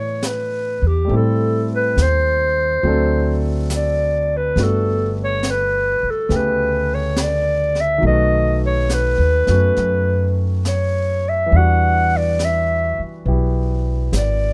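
A breathy clarinet carries the melody of this intimate, late-night jazz ballad, its mellow subtone and light vibrato sitting up front with a vintage character. Moving at a slow 69 BPM in 4/4 with a swung eighth-note feel in D major, the excerpt runs about 14.5 seconds and is cut from a longer piece. Beneath it, a clear concert grand piano supplies the accompaniment with a natural tone and deep low end, while a woody, thumpy upright bass with gut strings is played pizzicato and placed up front. A jazz kit played with brushes enters at 0.2 seconds, keeping to brushed snare, high-tuned snare and hi-hat in a small-room sound well back in the blend. The harmony drifts from Dsus2 through Am7 and D7 to a long Gmaj9, then B7 and Em9, all framed by light reverb.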